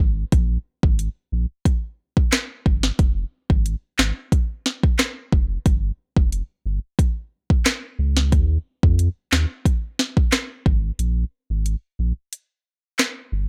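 Dry, gritty and up front, this tough, bouncy dancehall excerpt in F minor at 90 BPM sets a round, sustained sine sub bass running from 0.0 to 13.5 seconds under an electronic afro-pop drum kit of handclaps, hi-hat, rim click, a deep kick and a sharp snare that enters at 0.3 seconds, before a break arrives at 11.0 seconds.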